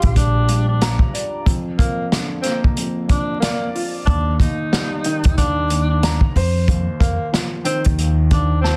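This is a boom-bap hip-hop excerpt at 92 BPM in 4/4, with a 16th-note swing that gives it a loping, reflective and dark mood. A mellow tenor saxophone carries the melody in a distant, roomy jazz style, using subtone, vibrato and scooped notes. A dark, smooth baby grand piano with a vintage character accompanies it, and both sit filtered at the top and bottom. Beneath them, a pizzicato upright bass with steel strings gives a woody, thumpy low end, and an acoustic vintage drum kit drives the groove with a punchy kick, a medium-tuned snare and hi-hat, all carrying a rolled-off top. The harmony moves from Gm7 to Bb/F, Eb and F7, with a break from 1.5 to 4.1 seconds. A light reverb, vinyl crackle and a dense, heavily limited modern master wrap the whole piece in a dusty, nostalgic haze.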